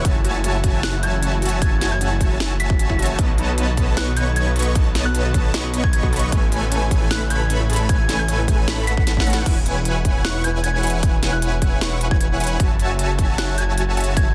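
This excerpt from a longer future bass track opens straight into its drop at 153 BPM in a half-time feel in E major, led by a punchy, layered electronic kick, a thick detuned saw bass pumping against it with chorus, and a huge compressed supersaw riff. Very quiet arpeggios float above from an airy, dreamy lead and a lush, warbling wave-folded pluck, while a breathy pad with a slow attack and phaser holds sustained chords underneath. A trap kit adds a sharp snare, crisp hats and crash cymbal, and from 0.8 seconds a pure FM bell melody sits in the background, treated with chorus, sidechain pumping and digital delay. The harmony moves through F#m7, B7, Amaj7 and E6, and a drum fill at 9.1 seconds leads into a second pass of the drop, where the pluck and pad fall away around 9.5 seconds. The mood is euphoric and bright, with a dry, densely limited mix that keeps kick and bass up front.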